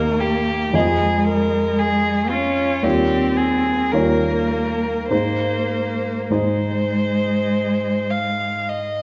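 In a rubato 4/4 pulse at around 49-58 BPM, this tender, lyrical fragment of a slow romantic piano trio movement in Ab major sets a rich, smooth violin melody with even vibrato up front over an expressive bowed cello second line that glides with portamento and soft attacks until 8.7 s, both carried by a polished, present grand piano accompaniment and bathed in the wet reverb of a recital hall as the harmony moves from Eb through Fm7 and Eb9 to Ab at 5.1 s.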